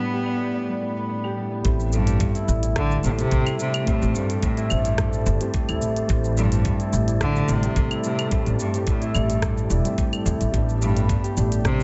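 Organic downtempo in A minor at 108 BPM with a light sixteenth-note swing, this mystical, meditative excerpt sets a biting, earthy bowed cello melody with digital delay over a dark, felt-muted upright piano whose audible action noise sits in the background under sidechain pumping and tape echo. A thumb-plucked concert harp rings out arpeggios through tape echo, while a warbling, detuned tape-like pad and a breathy, wind-like tuned noise texture hover very quietly beneath. Crisp, low-passed electronic claves, hi-hat, rim click and shaker enter at 0.3 seconds, and at 1.6 seconds a woody pizzicato upright bass and a gritty, thumpy electronic kick join, all in a small room with light reverb.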